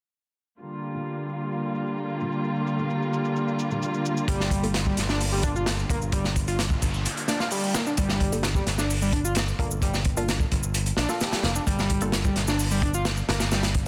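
Breakbeat at 130 BPM in G minor, gritty and energetic, where dark, woody chamber strings hold a pumping, low-pass-filtered Gm7 chord up front alongside a background shaker and muted, detuned dub chord stabs with phaser and echo, until at 4.3 seconds a crunchy, saturated breakbeat kit, a bright picked electric bass with tube saturation and a screaming, guitar-like overdriven synth lead with vibrato and dub echo arrive, a noise sweep and filter sweep carrying the fragment into its second section at 8.0 seconds.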